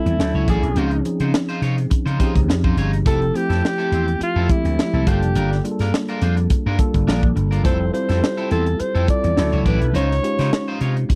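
Upbeat and urban, this polished 1980s jazz-funk pop excerpt grooves at 105 BPM in F major with a light swing, as a breathy, scooped alto saxophone with vibrato and slapback echo carries the melody over barky, slightly out-of-tune tine electric piano with analog chorus, a twangy, slightly broken-up picked electric guitar riff with subtle chorus, growly up-front slap bass and a tight funk kit with a punchy kick and high-tuned snare, all captured in a dry, close 1970s-style studio with light reverb as the chords move from Dmaj9 and Dbmaj9 through Fmaj7 and Gm7.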